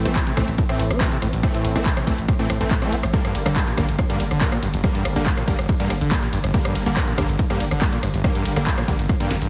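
A layered, punchy electronic kick drives this short cut of intense, relentless peak-time techno at 141 BPM in a straight 4/4, sitting at the front of the mix from 0.2 s. Around it, an analog drum machine supplies handclaps, hi-hat, ride cymbal, rim click and a punchy snare, with a short room on the snare, clap and hats, and sidechain pumping on the hats and cymbals. A growling, buzzy 808-style bass holds the low end through a low-pass filter, while a squelchy, gritty acid bass riff with a resonant filter sweep, chorus and delay sits saturated in the background. Bright, detuned supersaw stabs with their own filter sweep, delay and sidechain pumping carry the harmony as it moves from Am to Gm at 3.1 seconds. A drum fill arrives at 9.3 seconds, and the whole passage has a heavily compressed, radio-like sound with light reverb.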